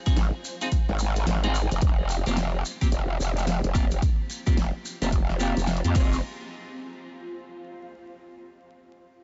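Glitch hop with a playful, swaggering swung feel, built on a punchy up-front electronic kick, a pop drum kit with a fat snare, hi-hat and crash, grainy maracas, a growling, wobbling, saturated growl bass, and twangy clean electric guitar stabs that carry chorus, tape echo, sidechain pumping and a filter sweep, all over a very quiet, blurred granular cloud pad that carries on alone from 6.2 seconds to the close of this fragment at 8.4 seconds, set in light reverb with a vinyl crackle and a dulled top end.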